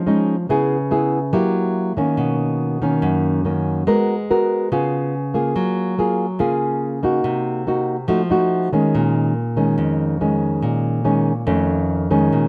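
Set in a straight 4/4 bossa nova groove, this short passage, cut from a longer piece, carries an intimate, melancholic mood. A single nylon-string guitar plays alone from start to finish, its classical, thumb-plucked acoustic tone placed up front and reaching from low bass notes into its upper middle register. The harmony moves through rich, jazzy chords, from Dbm7 and Gb7b9 to Bmaj9, then Abm9, Db7 and Gbmaj9, before a Cm7b5 and F7b9 lead to Bbm7 at 8.9 seconds and an F7alt at 11.5 seconds. A moderate echo-chamber reverb gives the guitar a sense of space. The overall production is dark and warm.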